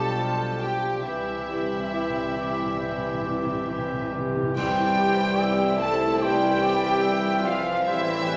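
This slow romantic orchestral passage moves in four with a flexible, rubato pulse, its lyrical, warm mood carried over a harmony that settles from G7/B to C and turns toward Am7 near the close. Sul tasto violins sing the melody with a dark, smooth top and light vibrato, while an airy, distant flute doubles that range and a warm oboe, a very quiet clarinet and a second violin group weave supporting lines beneath. Soft-attack violas and a light-vibrato bassoon fill the accompaniment, dark French horns hold roomy sustained chords, and cellos with a soft-attack, floating double bass section anchor the low end. From 1.1 seconds, close, dry timpani play a fill on C under very quiet bright cymbals and bass drum, leading to an ensemble accent at 4.6 seconds, where a tight trombone section and a barely audible vintage tuba join. The whole fragment, cut from a longer piece, sits in a wet recital-hall reverb that gives the intimate string sound a soft glow.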